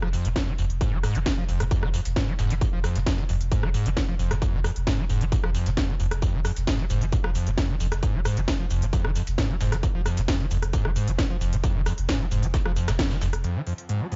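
A dry mix with a dark, rolled-off top end carries this driving peak-time techno fragment, industrial and hypnotic in a straight four. A distorted, up-front electronic kick re-recorded in a large room anchors a layered techno kit with a cracking snare, smooth hats, rim click and shaker, while a gritty sampler-style soul kit of hi-hat, snare and tambourine sits in the background above a round, sidechain-pumped sine sub bass. Over it all, a screaming, squelchy sawtooth acid riff with resonant filter sweeps, chorus and tape echo cuts through up front; the band hits an accent at 13.0 seconds, and an eerie metallic FM drone with ring modulation surfaces only at 13.8 seconds.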